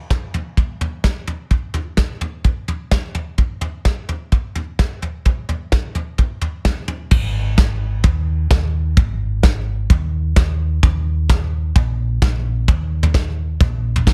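A dry, dense and heavily limited sound frames this wistful, stirring indie folk excerpt at 129 BPM in straight 4/4, tuned to A4 = 439 Hz, where an up-front soft brush kit with a tight kick, medium-tuned snare carrying a touch of soft clipping, toms and crash plays from 0.1 s, and a dark, round, punchy hollow-body short-scale bass, fingered and amped between Ab1 and Eb2, enters at 7.1 s to build the arrangement through to 14.1 s.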